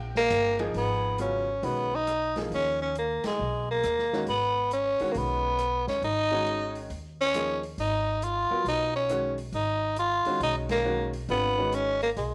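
A brilliant upright piano with short sustain and a thumpy, growly pizzicato upright bass open this spiritual, intense modal jazz excerpt, swinging in 4/4 as the harmony moves from D# to G#m11 at 0.8 seconds. A raspy, gritty tenor saxophone with vibrato takes the up-front solo, while an acoustic drum kit with dark cymbals, hi-hat, ride, rim click and snare sits in the background, and the band hits accents together at 3.2 and 10.6 seconds. The home cassette recording carries a small-room ambience, with tape colour on the piano, saxophone and drums and plate reverb on the piano and saxophone.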